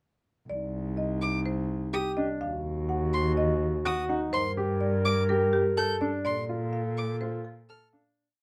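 A short minimalist classical piece built on repeating patterns, meditative and hypnotic in mood, moving in a straight, steady pulse. A marimba played with medium hard mallets carries the melody in a repeated short cell, its woody, percussive tone sitting dark and smooth. Beneath it, a single bowed cello holds long bass notes with vibrato, soft attacks and expressive portamento, while a mellow clarinet adds a second line of swelling held notes. A violin enters at 1.2 seconds with a rich, focused cell of high arpeggios, and a brilliant concert grand piano joins at 1.9 seconds with its own repeated arpeggio figure, up front and natural. The harmony moves through Cm, Ebm, Gmadd9 and Bbmaj7 in a dark production with light reverb, and the whole short piece fades out from 6.3 seconds.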